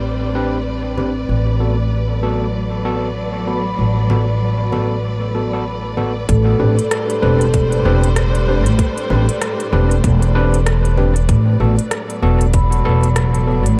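A woody, pizzicato upright bass sits up front in this hazy, spacious ambient dub excerpt at 96 BPM in A dorian, its steel strings holding the low end through a progression that moves from Am11 to Bm7/A and later to E9sus4. Behind it, a distant, lush string section sustains bowed chords with vibrato and expressive portamento, while a dark, smooth vibraphone played with medium mallets and the motor off spins ringing arpeggios in the background, colored by tape echo and a filter sweep during the opening 6.3 seconds. A bright, barky tine electric piano, overdriven and gritty through a combo amp, drops in stabs that trail off into dub echo. From 1.0 seconds an organic electronic kit of congas, crisp hi-hat and rim click adds a swung sixteenth-note feel, its tape-tinged sound also caught in dub echo and re-recorded in a large room. At 6.3 seconds a tight electronic kick joins to anchor the second section, and a light reverb gives the mix its airy depth.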